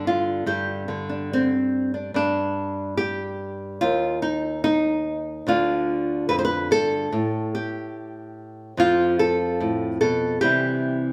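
A moderate stone-room reverb, about 1.2 seconds long, surrounds this live single-room recording, giving the close, up-front guitar a sense of space. It is a short folk excerpt for solo fingerstyle nylon-string guitar, hopeful and gentle in mood, moving at an unhurried 72 BPM in a straight 4/4 feel and set in G mixolydian. The fingerpicked guitar has a warm, small-bodied tone and covers a range from D2 up to C5, playing alone throughout. A brief opening on G gives way at 2.1 seconds to a longer passage where the harmony opens into unaccompanied melodic stretches. Along the way, Dm and later F pass by, before the phrase settles on C at 10.4 seconds.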